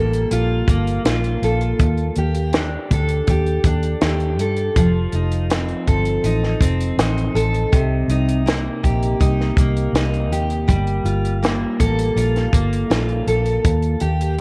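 A small, lightly reverberant room gives this wistful, mellow bedroom-pop excerpt in G minor an intimate, up-front feel at 81 BPM in a straight 4/4. A full-bodied fingerpicked steel-string dreadnought, tinged with subtle chorus and a warbly pitch drift, moves through jazzy colours like Gm9, Ebmaj7#11, F7 and Cm7 over a round, foam-muted vintage electric bass that sits dark and amped. A compact cocktail kit enters at 0.1 s with a punchy kick, a high-tuned snare and hi-hat, its smooth, rolled-off top keeping the groove warm.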